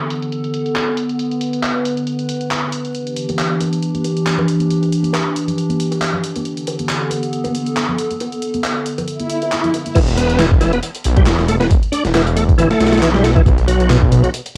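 A swung 137 BPM breakbeat groove in E minor pentatonic opens with a warbling, nostalgic tape-like pad holding sustained chords under a filter sweep, with house-kit claps and muffled hats and background congas and bongos, until a swell at 9.2 seconds drops at 10.0 seconds into a gritty, swaggering section where a shouting tonewheel organ riff with fast rotary speaker, a thick, menacing detuned saw bass and an overdriven, thumpy soul sampler-style drum kit push up front over a cassette recording's vinyl crackle.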